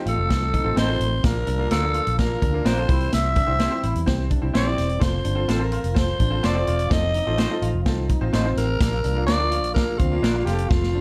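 A bright, slightly detuned upright piano and a very quiet tonewheel organ on a slow rotary speaker open this uplifting, danceable 1960s-style soul passage in F major at 127 BPM. They are joined at once by a raspy, growling alto saxophone carrying the melody up front, a twangy, slightly broken-up electric guitar riff, a round, foam-muted fingered bass, and a punchy, swinging big-band drum kit that closes on a fill at 10.7 seconds. Shortly after, a second, compressed guitar enters with stabs in the background, all set in a dark, warm production with moderate studio reverb.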